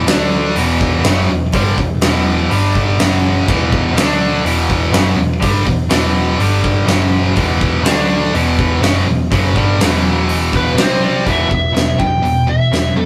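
A driving, heavy hard rock excerpt opens with two picked electric guitars playing a riff in E dorian at 123 BPM: one bright and overdriven, pushed up front, and a tighter distorted partner sitting a little further back. A dark, round hollow-body short-scale bass, picked and amped, holds the low end, while a huge arena drum kit with a punchy kick, fat snare, hi-hat and crash cymbal comes in at 0.1 seconds and stays prominent. The harmony cycles between Em and power chords on D, G, F# and E, reaching C just before settling back on Em at 11.3 seconds. At 10.6 seconds a bluesy, distorted lead guitar with a dusky tone steps forward with a melody. The sound is that of a rough rehearsal room with moderate ambience, loud and raw, cut from a longer piece.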